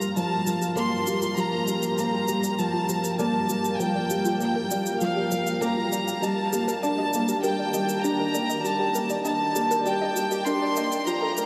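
From the first second, a dark, felt-muted upright piano riff and a biting chamber violin section melody sit up front, both touched by analog delay, over a blurred granular cloud pad, warbly lo-fi pluck arpeggios and a produced electronic shaker, in this hypnotic, moving piano and strings electronica at 99 BPM, where a dreamy mix soaked in huge ambient reverb carries filter sweeps on the pad and arpeggios through a build-up, moving from Gm7 to Ebmaj7 at 6.2 seconds in an 11.5-second cut from a longer piece.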